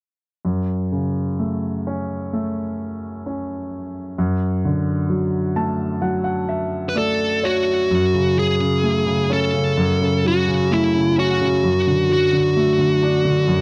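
This is a dry, close recording with a 1970s studio character and a short, moderate booth ambience, cut from a longer pop piece with a longing, emotional mood. A clear, polished grand piano sits up front and carries the accompaniment throughout, moving between F# minor and D over F#. From 5.1 seconds the piano plays a fill that leads into the second section. At 6.9 seconds a dark, high-gain electric lead guitar enters up front with distortion, picking out the melody in a narrow upper-middle range. Together the clear piano and the gritty guitar give the passage a heartfelt, yearning feel.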